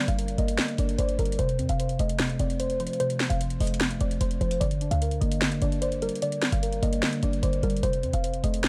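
Dark production and digital ambience frame this menacing, hard-hitting half-time trap fragment, cut from a longer piece. A soft, rounded pluck carries the melody through chorus, a low-pass filter and tape echo, while muted, felt-like synth keys accompany with an intimate, soft tone shaded by chorus, phaser and filtering. Up front, a short, punchy 808-style bass with a tight sine body and a trap kit with a sharp snare and metallic hi-hats join at 0.1 seconds.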